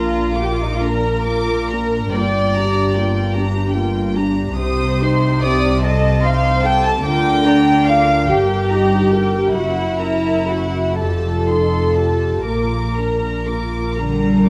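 Soaked in wet recital-hall reverb, this tender, lyrical slow romantic movement for string orchestra drifts in rubato 6/8 at 39-51 BPM in Bb major, with a rich, intimate first violin melody played sul tasto with light vibrato, an up-front second violin line that sounds pure and floating, dark, woody violas, soft-attack cellos and close, bowed double basses carrying the bass, as the harmony passes through Gb7 and F9 before settling back on Bb at 12.5 seconds.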